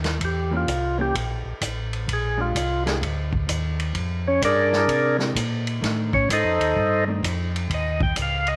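Bathed in moderate spring reverb and small room ambience, this soulful, bluesy soul jazz organ trio excerpt swings in 4/4 as a full, percussive tonewheel organ with key click and slow rotary speaker solos up front from 0.2 seconds over a round, dark organ bass line and a vintage drum kit with a punchy kick and rolled-off top, while a clean, picked hollow-body jazz guitar sits in the background from 0.5 to 7.2 seconds through Edim7, Bb13, F13 and Eb chords.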